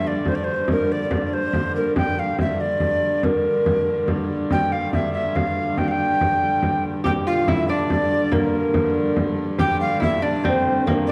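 An ancient, mysterious mood hangs over this short medieval dance in G dorian, which moves in a straight 6/8 at 94 beats per minute, counted in dotted quarters, and is cut from a longer piece. A mellow tenor recorder carries the melody from the start, its airy, woody tone touched with vibrato and soft attacks, sitting up front yet with a distant quality. Beneath it a hurdy-gurdy holds a nasal, reedy drone low in the range, played close by a single wheel-bowed player. A frame drum joins at 0.3 seconds with soft hands, its vintage, band-limited sound kept up front. At 7.0 seconds a fingerpicked lute enters with a delicate second line, its bright nylon double strings adding shimmer as the opening phrase returns. The whole is bathed in a recital hall's wet reverb, giving the dark production a sense of stone and space.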